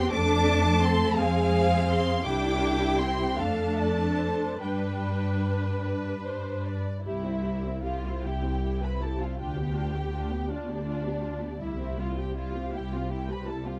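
Bowed double basses sit up front beneath a slow, lyrical classical movement for string orchestra in C major, swaying in 6/8 at around 47-57 BPM with a free, rubato feel. A dark, woody first-violin section carries the melody over a second-violin line with soft attacks and portamento, while even, smooth violas accompany and a rich, focused cello section rests in the background, all played with vibrato. Heard close and dry, this short cut from a longer piece passes from F through a tender F minor back to C before the second section opens at 7.1 seconds and settles home on C.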